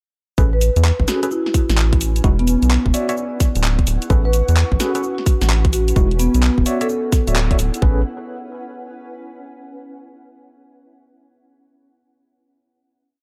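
A rubbery, hollow square bass pumps up front through a soulful, sunny two-step garage groove, riding an overdriven tight electronic kick and a cracking garage kit of skipping swung hi-hats, snare, handclaps and cabasa, while a worn, slightly out-of-tune tine electric piano with tremolo and delay plays syncopated chord stabs, a round soft-mallet marimba adds short dry phrases, and a cloudy granular pad that enters at 1.4 s lingers into the final chord at 7.8 s, all within a dark, warm digital ambience.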